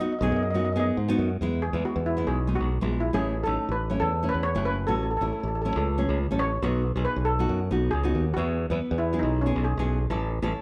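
A carefree, festive calypso fragment, cut from a longer piece, where a shimmering double-seconds steel pan struck with hard rubber sticks sits up front and takes a solo from 1.4 seconds, over a full-bodied, fingerpicked nylon-string guitar with fresh strings and a growly, punchy fingered electric bass, all captured as a band playing live in one room with a moderate large studio reverb.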